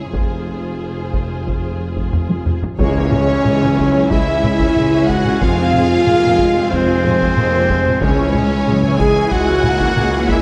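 Lush violins with vibrato carrying a melody and a second line over expressive, distant violas, very quiet cellos, soft-attack double basses, a dark, tight French horn section holding chords, a mellow background tuba and heavy-stick taiko drums sounding close and dry open this dramatic, epic orchestral film cue at 92 BPM in straight 4/4, moving between F minor and C-sharp minor; after a drum fill, a band accent at 2.8 seconds brings in a close string section with sustained chords, roomy trumpet stabs and a very quiet, bright tam-tam, while very quiet hard-mallet timpani sound at 8.0 seconds, the whole cue framed by a moderate scoring-stage reverb.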